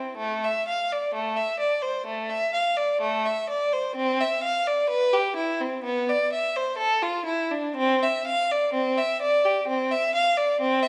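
A single rich, focused violin with vibrato and a smooth top sits up front, playing alone from A3 to F5 for the whole 10.9 seconds of this solemn, introspective passage cut from a baroque-style classical suite movement for unaccompanied violin, taken at a rubato 64 BPM in 4/4 and carried by the 1.5-second reverb of a church or concert hall.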